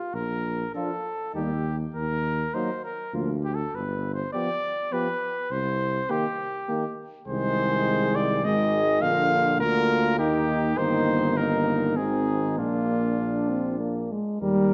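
Stately and warm, this classical brass quintet passage is cut from a longer piece and moves in a rubato 3/4 at about 101 BPM in Bb major. The trumpet carries the melody up front with a soft attack and smooth top, while the tuba anchors the bass, also forward and present. The French horn, with light vibrato and a gentle onset, joins as accompaniment at 0.7 seconds. At 0.8 seconds the punchy flugelhorn adds a second line and the clear trombone fills in the accompaniment, both set further back. The harmony passes through an Eb minor colour and a G7 before moving through Bb, Eb and Ab chords toward the close, all under a moderate scoring-stage reverb and a dark production that keeps the highs subdued.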